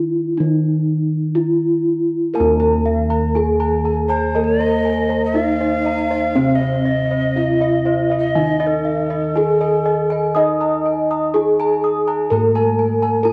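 This serene, shimmering fragment of Javanese gamelan opens with a bronze metallophone carrying the melody up front, struck with padded disc mallets so its paired tuning gives off soft, beating shimmer and a slightly vintage, band-limited tone. Beneath it, a darker, smoother metallophone plays accompaniment, while bossed gongs hold the bass with a round, warm sound in a boxy small room. At 2.4 seconds, higher arpeggios arrive: bright bossed gongs and a ringing metallophone played with a wooden mallet, which adds its own tuning shimmer. From 4.1 to 10.9 seconds, a breathy, mellow tenor recorder weaves a second line with vibrato and tongued chiff, its rolled-off highs and unsteady tone giving it a soft, woody quality. A lush plate reverb lets the bronze tones linger into a gentle, unhurried glow.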